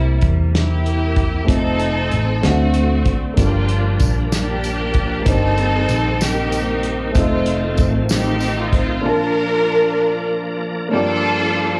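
A lush, focused string section carries the reverent, uplifting melody up front with vibrato, slapback echo and plate reverb in this slow gospel fragment in 6/8. Beneath it sit a woody upright piano with long sustain, a round, punchy hollow-body bass and a small-room soul kit of hi-hat, tight kick and medium-tuned snare with a rolled-off top. A shouting, lightly overdriven tonewheel organ with fast rotary speaker sits in the background alongside a jingly, dry tambourine, both entering at 3.4 s, and the bass drops out at 9.0 s, the whole performance heard live through a club PA.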